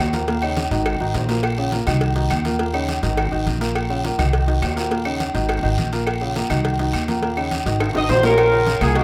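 Fiery and passionate, this fast salsa clip in Bb minor at 207 BPM rides a thumpy, dark pizzicato upright bass and a worn, slightly detuned upright piano cycling Ebm7, Ab5, Bbm and Cm7b5, over a bed of soft-handed low congas, tight high-tuned cowbell and bongos, raspy guiro, ringing distant agogo bells and timbales, and woody claves, with a drum fill at 7.8 seconds before a mellow, punchy horn section with light vibrato bursts in at 8.0 seconds, all in a rough home-demo mix with moderate studio reverb, cut from a longer piece.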